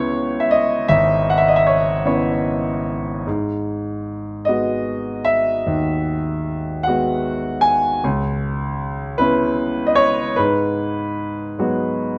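A slow, rubato 6/8 pulse at 51 BPM in dotted quarters gives this melancholic, reflective classical excerpt in G# minor a lyrical, unhurried sway, with the harmony moving between C#m7 and G#m7. A solo concert grand piano carries the whole 12.2 seconds, up front and open, its tone clear with a deep bass reaching from G#1 to G#5. Close, detailed microphones capture it within a moderate recital hall reverb of 1.4 seconds, and the passage is cut from a longer piece.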